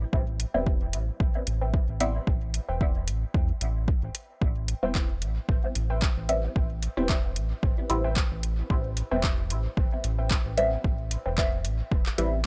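Dry and gritty in a digital ambience, this meditative, hypnotic dub techno excerpt in A minor rides a swung 112 BPM groove on a single Am9 chord, with an overdriven deep electronic kick up front, a deep house kit of overdriven handclaps and metallic hi-hats, a round, dark analog bass pumping from the sidechain beneath, muted, nasal filtered chord stabs soaked in phaser, cassette tape and dub echo, and a warbling, dusty lo-fi pluck riff with chorus and echo tucked in the background until 11.4 seconds.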